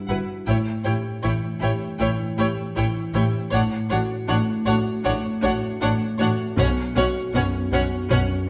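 A moderate scoring-stage reverb wraps this moving, longing cinematic excerpt for orchestra at 79 BPM in a rubato 4/4, where a soft, felt-muted upright piano with audible action noise sits up front in accompaniment while a rich, distant violin section carries the high melody over a second violin line, a clear, intense viola section, a lush cello section in the background and a smooth studio double bass section, all bowed with vibrato through the chords A7, D/A and Bsus2.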